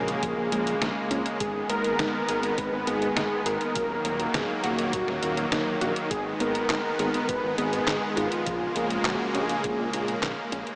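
A straight 4/4 pulse at 102 BPM comes from a detuned 8-bit digital drum machine with handclaps, hi-hat and a medium-tuned snare, while a thumpy electronic kick sits in the background, driving this cinematic synthwave excerpt in G# dorian. A smooth, up-front soft supersaw holds sustained chords with subtle chorus and sidechain pumping, a mellow chorused synth bass with tube saturation anchors the low end, and a very quiet unison pluck adds lush arpeggios with a moving notch. Over the top, a thick, dark unison lead carries the melody through cassette tape colour and diffuse ambient delay, all in a dreamy mix soaked in huge reverb with a small speaker sound that fades out from 9.2 seconds.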